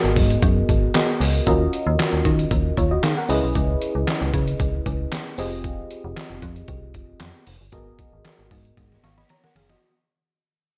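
A straight 4/4 groove at 115 BPM from a gritty, pitched-down sampler-style drum kit of thumpy kick, medium-tuned snare, handclaps and hi-hat, overdriven and treated with gated reverb, drives this slick, late-night early-eighties boogie funk fragment, where a metallic, digital FM bass with a fast, decaying attack sits beneath a glassy, bell-like FM electric piano shimmering with chorus across minor-ninth chords from Abm9 through Ebm9, Dbm9 and Fm9, all tuned to A4 = 437 Hz in a dry mix that fades out from the start until a drum fill arrives at 8.8 seconds.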